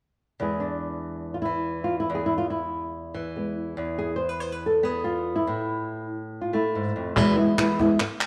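A thumb-plucked flamenco guitar sits up front in this dramatic, intense flamenco fragment, its warm acoustic tone spanning low bass notes to high melody, with audible finger squeaks. At 7.2 s, crisp, close palmas hand claps and a woody cajon join, the cajon played with soft hands and faint snares, set in the background in a live room. The sound carries a wet echo-chamber reverb with small-room ambience, giving the brief passage an intimate yet resonant space.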